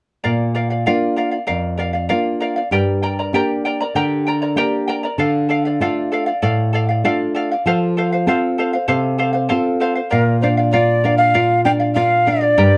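Andean folk with a wistful, melancholic mood at a moderate 97 BPM in a straight 4/4, where a shimmering, fingerpicked charango with double strings enters at 0.2 seconds and a dark, classical nylon-string guitar, its finger squeaks audible, follows just after at 0.3 seconds, the two cycling through Bb, Gm, Dm and F. At 10.1 seconds, as the harmony returns to Bb, an airy cane quena enters with the melody, its straight tone carrying a crisp chiff and a somewhat unsteady quality. The close, detailed recording sits in a small room with moderate reverb, and this excerpt is cut from a longer piece.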